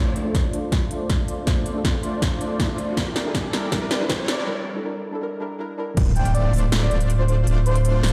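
A half-time 160 BPM groove in 4/4 drives this emotional, bittersweet future bass fragment in D minor, where a deep, saturated sub bass and a punchy electronic kick sit up front beneath a big-room dance kit with crisp hats, crash and snare, while a smooth, detuned supersaw riff moves through a filter sweep, a soft, round pluck pulses darkly in the background, and a background riser builds through a drum fill, followed by a break before the drop at 6.0 s lands with an impact and, from 6.2 s, a breathy, flute-like synth lead soars over Dm7 in a large, reverberant room.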